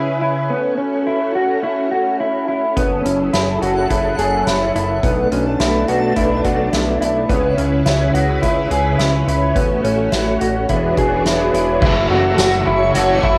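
A mellow electric guitar plays dark, clean arpeggios over sustained, organ-like ensemble string chords from the start, both up front and coloured by chorus and cassette tape, with analog delay trailing the guitar. This dream pop excerpt moves at 106 BPM in a straight 4/4 in F# minor, and its mood is melancholic and ethereal as the harmony drifts through C#m7, A6, F#m9 and Bm11. At 2.8 seconds a glossy, evolving synth bass joins with a distant, roomy drum kit played with soft mallets, its punchy kick, snare, hi-hat, tambourine and crash sitting back in the mix. A twinkling granular texture with octave-up shimmer glints in the background from 3.8 to 7.5 seconds and returns briefly at the end. At 11.8 seconds, as the chords land on F#m7, a bright, crunchy overdriven guitar, double-tracked and pulsing with tremolo, pushes in for the closing bars. The whole piece carries the hazy feel of a home cassette recording in a small, wet booth.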